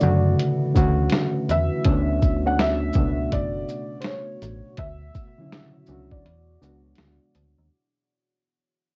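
Recorded at home onto cassette with light reverb, this hazy, melancholic lo-fi hip hop fragment fades out from its first moment, and a break arrives at 6.2 seconds as the chords drift from E13sus4 through Bm9 and Dmaj9 to E13. A reedy, worn, slightly out-of-tune electric piano sits up front with plate reverb, while a soft, thick-felt upright piano carries the melody through cassette tape and analog delay until 7.3 seconds. Beneath them, a compressed, muffled sampler-style kit with a thumpy kick, 12-bit grit and a swung feel runs alongside a metallic, fast-attack FM bass and a deep, dark, detuned sawtooth pad with chorus that lingers in the background.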